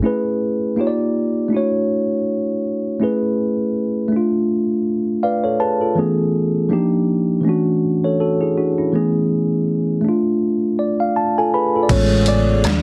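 A heavily compressed, radio-like sound with a small room's reverb frames this sensual neo-soul R&B fragment at 81 BPM in A major, its swung sixteenths giving a relaxed 4/4 feel. A mellow, clean tine electric piano plays alone up front, cycling through Amaj9, D#maj9, Dmaj9 and Dm voicings and adding fills around 4.9 and 10.4 seconds. At 11.9 seconds a hollow, flute-like chorused pad, a dark, round foam-muted fingered bass and a gritty, pitched-down boom bap kit with a thumpy kick, high-tuned snare, hi-hat and crash all arrive together.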